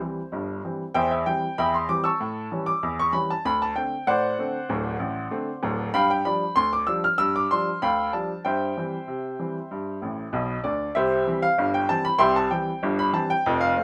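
A lightly reverberant, up-front recording carries a playful, cheerful ragtime piece in a straight two-beat metre, cut from a longer performance. A clear, woody upright piano plays solo throughout, ranging from D1 up to F6, over a chord progression that moves from C through A7 and D7 to G. A short piano fill at 10.0 seconds leads into a new section that begins at 11.0 seconds and returns to C.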